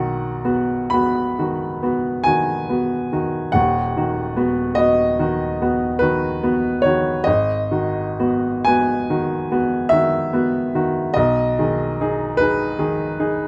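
In a rubato 9/8, this tender, dreamy romantic nocturne fragment features a solo upright piano, clear, woody and vintage in tone and placed up front in a small room with moderate reverb, moving from B through B/D# and G#m7 to G#m/B over its 13.5 seconds.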